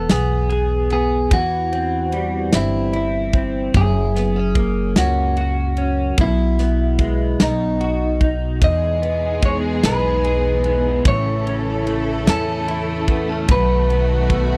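A swaying, romantic six-eight pop ballad in E major at a slow 49 BPM, this dry, close 1970s-style excerpt sets a picked, slightly broken-up electric guitar melody up front over a double-tracked, scooped clean guitar, a woody, growly pizzicato upright bass and an acoustic drum kit with tight kick, snare and ride, before a lush bowed string section enters at 8.6 seconds with sustained chords as the harmony moves from E through C/E and F# toward Emaj7, A and B7.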